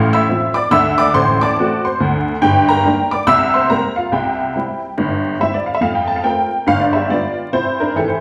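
A detuned, jangly honky-tonk upright piano plays solo and up front in this exuberant, swinging stride jazz passage cut from a longer piece, moving at 141 BPM in F major with a swung eighth-note feel, its bright, vintage tone spanning G1 to F6 and set in a large, wet studio reverb with vinyl crackle and a live-in-one-room character across its 8.2 seconds.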